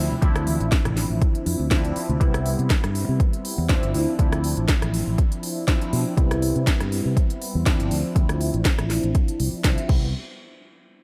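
A swung 16th-note groove at 121 BPM in 4/4 drives this feel-good, funky filtered disco house cut, built on a dry, punchy, overdriven electronic kick up front and a layered house kit with a cracking snare, crisp hi-hats, rim clicks and crash cymbals, its hats and cymbals pumping with sidechain. A fingered electric bass, direct and amped with a low-pass filter sweep and sidechain pumping, sits under a detuned sawtooth polysynth comp with a fast attack, chorus, phaser and its own filter sweep, alternating between Dm9 and Cmaj7. Very quiet acoustic maracas and congas, recorded in a small room, appear only from 0.1 to 2.2 s, and the whole section is set in light digital reverb.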